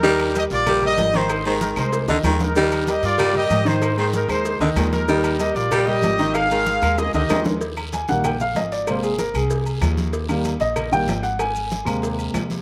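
A straight four-beat salsa groove drives this joyful, danceable excerpt, built on a thumpy, dark gut-string upright bass and a background bed of hard-handed congas, tight high-tuned cowbell and bongos, ringing agogo bells and timbales, woody claves, raspy guiro and grainy maracas. Up front, a punchy, clear trumpet section carries the melody over a breathy, gritty baritone saxophone second line with vibrato, and both drop out by about 7.5 seconds. A warm, vintage upright piano with slapback echo accompanies throughout, then, after a brief drum fill, takes a smooth solo from 7.6 seconds to the end at 12.6 seconds.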